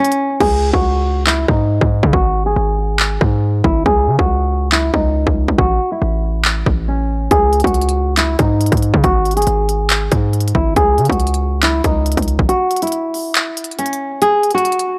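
Hip hop in a menacing, eerie trap vein at 139 BPM with a half-time feel in C# minor, this dry, gritty cut from a longer piece is led by a fingerpicked classical nylon-string guitar, complete with finger squeak, carrying a low-pass-filtered melody with analog delay and a filter sweep from 0.4 seconds. An electronic trap kit with a hard-clipped kick, crisp hats, handclaps and crash sits up front, its hi-hats muted from 0.4 to 7.3 seconds. A punchy, heavy 808-style sine bass with a noise layer and fast attack hits from 0.4 to 12.5 seconds over sparse chords that drop out at times, all colored by transformer saturation.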